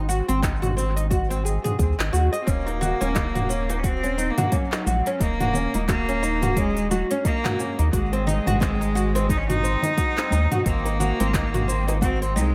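A woody, plectrum-plucked oud sits up front from the very start, spinning arpeggios on its double strings with dub echo trailing behind each phrase. This is an earthy, mystical slice of organic downtempo with a gentle swing on the 16ths, cut from a longer piece and moving between Ab7 and Ebm7 chords. Underneath, a round analog bass with a nasal, sine-like tone pumps against the sidechain while a deep electronic kick anchors the groove. An overdriven kit of cabasa, handclaps, crisp hi-hat and toms, re-recorded in a large room, adds grit. At 2.4 seconds a bright cello takes up the melody with light vibrato, its bowed line sounding distant yet prominent and also bathed in dub echo, and at 2.7 seconds very quiet, band-limited bongos and congas join with a vintage acoustic color. Moderate spring reverb gives the echo-heavy mix its spacious character.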